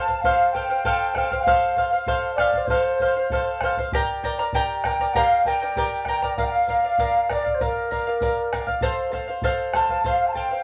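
Wistful and earthy, this short Andean folk excerpt has a hollow, softly attacked pan flute carrying the melody from a distance, while a large quena adds an airy, vibrato-tinged second line in the background. Up front, a bright fingerpicked charango shimmers on its doubled strings, and a deep bombo sounds close and dry beneath them. The harmony moves from F through Gm and Bb before returning to F at 8.8 seconds, all set in a damp studio ambience.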